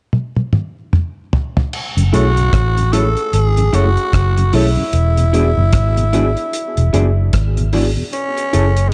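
This short cut from a lovers rock reggae piece moves at a relaxed 75 BPM in 4/4, with a loose swing on the sixteenths and a bittersweet, longing mood in F# minor. A cloth-damped drum kit opens with a fill over crash, hi-hat, toms, rim click and a tight kick, its thuddy, dry sound and dark cymbals sitting up front. At 2.0 seconds a foam-muted fingered electric bass arrives, round and amped, holding low notes between E1 and B1 as the loudest part in the mix, while a very quiet tonewheel organ with key click and a slow rotary speaker fills in softly underneath. Over the F#m7 and E7 harmony, a raspy, growling tenor saxophone takes the solo melody with light vibrato and tape echo. A mellow tine electric piano with dub echo and a slightly broken-up, lo-fi guitar through a small old amp add stabs and accompaniment in the background. Studio reverb gives the whole production a dark, warm cast.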